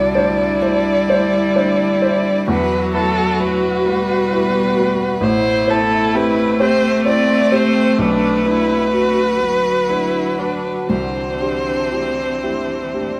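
A slow, rubato neoclassical passage in 6/8 at 43 BPM opens with a single dark, close violin singing a longing melody with vibrato and portamento over a clear, intense cello second line, a smooth-topped bowed viola and an intimate, woody upright piano with audible action noise, while a deep, moody chorused pad of detuned sawtooth and sine tones sustains chords in the background through Cadd9, Emadd9, Am7 and Bm in a reflective, lightly reverberant room.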